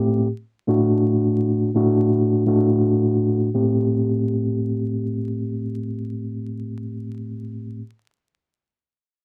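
Swung sixteenths in 4/4 give this moody, gritty hip hop fragment a lazy lean, as a mellow, clean tine electric piano sits up front, sounding as if heard through built-in speakers and shaped by high-pass and low-pass filters and a cassette tape effect, moving from Am7 to D/A and back to Am7, with a filter sweep on the keys through the first 3.5 seconds, all wrapped in light reverb, the character of a home cassette recording and vinyl crackle before the piano stops at 7.8 seconds.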